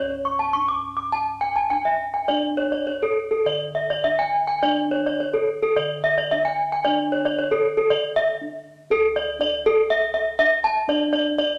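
A wet, large-studio reverb with a 1.1-second decay surrounds this short cut from a longer Balinese gamelan piece, giving it a shimmering, hypnotic mood. The bronze metallophone sits up front, carrying ringing arpeggios struck with a horn mallet. Its paired tuning produces shimmering beats against a boxy, small-room character. Beneath it, the bossed gongs hold the bass at a softer level, their round, mellow tone coming from padded beaters and carrying a warm beating of its own. The music moves in a straight 4/4 at 103-122 BPM in C# pelog, tuned to A4 = 441 Hz. A brief break at 8.2 seconds leads into a new section at 8.9 seconds, and both parts play through to the close, the metallophone stopping at 11.5 seconds and the gongs at 11.6 seconds.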